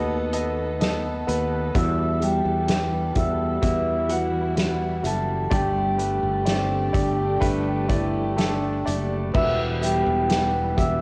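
A tender, emotional pop ballad cut from a longer piece, where a ringing, airy vibraphone carries the melody over an intimate concert grand piano with audible action noise and long sustain, a round fretless bass treated with analog chorus, and a very quiet, bright picked acoustic guitar playing arpeggios. A dark, woody string section bowed sul tasto holds lush chords in the background, while a soft-mallet drum kit with a punchy kick enters at 0.3 seconds and sits up front in a roomy space. A French horn section with light vibrato adds a brief second line from 6.5 to 9.3 seconds through analog delay, and the whole take carries the character of a home cassette recording with light reverb and small room ambience.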